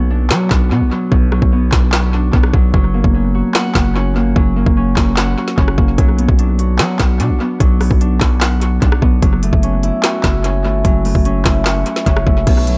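Brooding and melancholic, this half-time trap excerpt sets a ringing, fingerpicked Celtic harp, softened by a low-pass filter and analog delay, against a heavy, aggressive distorted 808-style bass with a fast attack and a noise layer. The trap drum kit enters at 0.3 s with a hard-clipped kick, woody snare, crisp hats, handclaps, rim clicks and crash cymbal, its own analog delay feeding an echo-heavy digital ambience. Harp, bass and drums all sit up front, with the opening 6.0 s forming a break.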